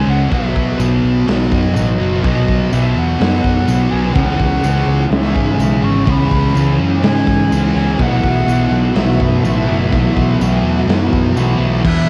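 A breathy, mellow flute melody with gentle vibrato floats over a thick, dark fuzz guitar riff swimming in lush chorus, joined by a double-tracked overdriven guitar, a round fingered bass, a raw garage drum kit with a punchy kick, and a jingly tambourine in the background, while a third guitar at the edge of break-up enters at 4.1 seconds through reverse reverb, all in a hazy, blissful shoegaze and dream pop excerpt at 125 BPM with a cassette-tape home-recording feel.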